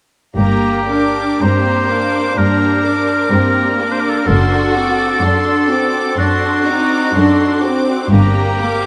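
Solemn and yearning, this brief classical passage is a slow romantic movement for symphony orchestra, taken from a longer piece and moving in a flexible, rubato 4/4. High above, a violin section carries the melody with soft-attacked, expressive vibrato, sitting quieter in the balance than the lines beneath it. A clear, up-front solo oboe with light vibrato shares a second line with a lush, focused lower violin section, while a distant, focused viola section fills in the accompaniment. Underneath, a smooth, close double bass section and a cello section with a smooth top anchor the bass, all the strings bowed with vibrato. The harmony rests on G minor, shifts to D7 over F sharp at 4.3 seconds, and returns to G minor at 8.1 seconds, all bathed in the long, wet reverb of a vast, echoing cathedral.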